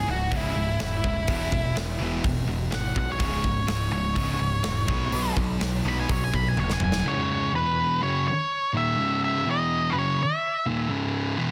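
An up-front octave-fuzz lead guitar carries an angsty, cathartic melody through this quiet-loud alternative rock cut at 125 BPM in C# minor, riding over a thick, dark fuzz riff guitar, a very quiet bright distorted rhythm guitar, a growly picked bass and a punchy big-room drum kit whose fill at 6.6 seconds gives way at 7.0 seconds to just the two fuzz guitars, all in a dense, heavily limited modern master with light reverb.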